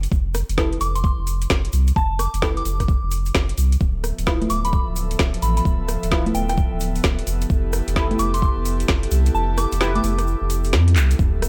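Dry, punchy and up front, this bouncy, skippy two-step garage excerpt sets a thick, saturated sub bass pumping under a knocking, overdriven kick and a garage kit of woody snare, metallic hats, congas, handclaps and rim clicks, with a grainy egg shaker in the background, bright detuned chord stabs under a filter sweep, a soft, pure FM bell melody through phaser and delay, and an airy, breathy pad arriving at 3.8 seconds, before the kick drops out at 9.3 seconds and a drum fill leads to an impact and a sub drop at 11.2 seconds.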